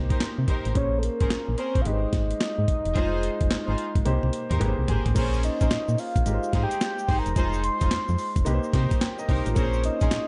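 A clear baby grand piano and a punchy, round FM bass open this confident, bouncy new jack swing R&B cut in Bb dorian at 109 BPM with a swung 16th feel, joined at once by a gritty, compressed breakbeat-style kit with a thumpy kick and a fill at 4.1 seconds, smooth, reedy string stabs, a soft octave-layered synth lead carrying the melody with chorus and vibrato from 0.8 seconds, and a grainy tube shaker tucked in the background from 5.2 seconds, all set in a dark, warm digital ambience.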